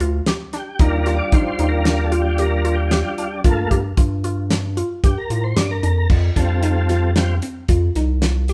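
This progressive instrumental fragment has a driving, tense band feel, moving in an uneven 5/4 with a straight pulse. A damped 70s drum kit sits up front with a fat snare, tight kick and dark cymbals, giving the groove a dry, rolled-off character. A round analog bass, deep and sustained with a fast attack, anchors the low end alongside the drums. A hollow square pluck plays bouncy, detuned arpeggios with a short decay and chorus, set lower in the balance. The tonewheel organ arrives at 0.6 seconds with a smooth, clean tone shaped by chorus vibrato and a fast rotary speaker, and takes a solo through the opening section before dropping out at 7.3 seconds. Light reverb gives the impression of a band playing live in one room, and the harmony passes from a third-less G7 through major and minor sevenths before settling on F at 6.1 seconds.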